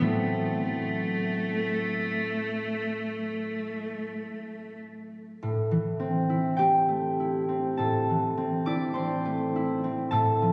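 A rich, focused cello sings a wistful, vibrato-laden melody around A3 over ringing, fingerpicked concert harp in this hazy impressionist classical fragment in A minor, drifting rubato at roughly 43-52 BPM through Am6 and Am7 harmonies, until the cello falls away at 4.8 seconds and the harp carries on alone to 10.5 seconds, all bathed in a wet church reverb and captured with a compressed, phone-in-the-room sound.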